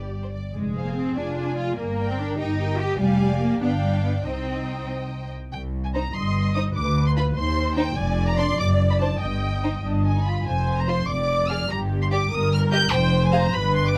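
Up front in the mix, a woody, bowed double bass section anchors this quick, urgent passage for string orchestra in 6/8, cut from a longer classical-period movement. Above it, a chamber-sized violin section carries the melody high in its range with a focused, vibrato-rich tone and a smooth top. A lusher symphonic violin section joins at 0.2 seconds with a lower second line, and the viola section fills the middle with even, warm accompaniment. The cello section enters at 0.5 seconds to share the bass role with the double basses. Restless harmony built on minor and diminished chords presses toward a dominant seventh, and the opening phrase returns at 5.5 seconds. Light reverb and close, detailed microphones keep the ensemble intimate and clear.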